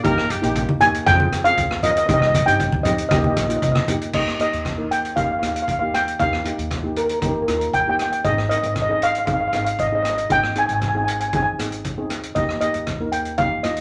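A mellow, up-front lead steel pan carries the tune from 0.8 s in this sunny, festive calypso cut at 117 BPM in Eb major, after a brief vintage trumpet phrase that ends at 0.7 s, over a boxy second steel pan on accompaniment, a woody, thumpy pizzicato upright bass, a mid-forward street-band drum kit with boomy kick, crash, hi-hat and rim clicks, and low-tuned, dry congas that drop out at 4.0 s, set in a short, wet studio reverb.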